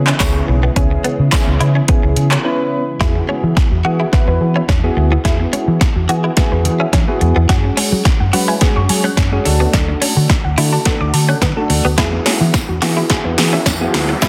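An overdriven deep house drum kit sits up front in this confident, energetic dance-pop excerpt, its deep kick, punchy snare, metallic hats, handclaps and shaker sounding layered and re-recorded in a large room. A dark, foam-muted fingered electric bass matches the drums in level, pumping with the sidechain alongside mellow electric-piano-like synth keys treated with chorus and phaser. A clean, direct-recorded electric guitar plays a compressed, picked riff through an ensemble chorus, while a very quiet, ethereal pad with octave-up shimmer holds sustained chords until a short break ends at 3.0 s, and a jingly tambourine adds brief accents near the opening and again near the close. From there a soft triangle-and-sawtooth pluck spins arpeggios in the background with chorus and digital delay, as a build-up with a drum fill and a filter sweep carries the rest of the passage. A background riser enters at 13.3 s, capping a dense, heavily limited modern mix with light reverb.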